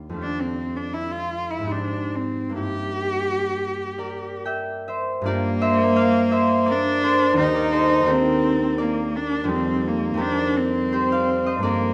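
In a rubato 3/4 that drifts between 60 and 89 BPM, this hazy, mysterious impressionist duo in G minor is a fragment of a longer classical piece, tuned to A4 = 436 Hz. A bright, ringing concert harp, fingerpicked and up front, begins at 0.0 s and spans a broad range beneath a close, smooth cello that enters at 0.2 s with a bowed, vibrato melody between Bb3 and G4. Chords such as Abmaj7, Gm6, Ebmaj7 and F9sus4 float through a wet recital hall reverb.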